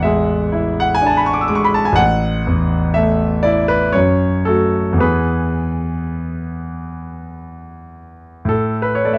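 Dark, polished production places a clear concert grand piano up front in a moderate studio reverb, its deep bass and short sustain giving each phrase a present, clear character. This nostalgic, serene romantic nocturne for solo piano moves in a rubato 3/4 at roughly 51-63 BPM, spanning from A1 to E6 across the 9.2-second excerpt. The harmony drifts from E7/A through A5, F#m and E before settling on A at 8.5 seconds.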